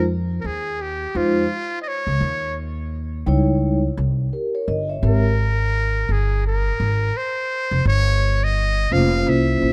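A dark, intimate small-room sound frames this nocturnal, smoky hip hop fragment, which swings gently and is cut from a longer piece. A breathy, buzzy trumpet with a metal mute carries the whispered, jazz-style solo melody up front with light vibrato, over a woody pizzicato upright bass. At 1.1 seconds a mellow vibraphone played with soft mallets joins in, ringing with a slow motor vibrato and a slightly boxy tone as it accompanies the minor-leaning seventh and ninth chords.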